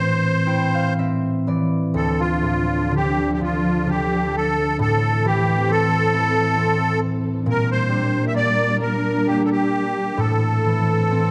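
A dark, warm production sits in a moderate scoring-stage reverb, giving this Celtic slow air in D minor a haunting, longing atmosphere. The pulse is a rubato 3/4 at roughly 60-70 BPM. A ringing, fingerpicked concert harp opens with a fill over A minor, while the reedy, shimmering musette accordion carries the melody up front with its characteristic musette tuning. At 2.0 seconds a lush, bowed studio string section enters in the background with woody, vibrato-laden sustained chords and a smooth top. The harmony moves from D minor through A minor and G minor over B-flat before settling back on A minor, and the recording is cut from a longer piece.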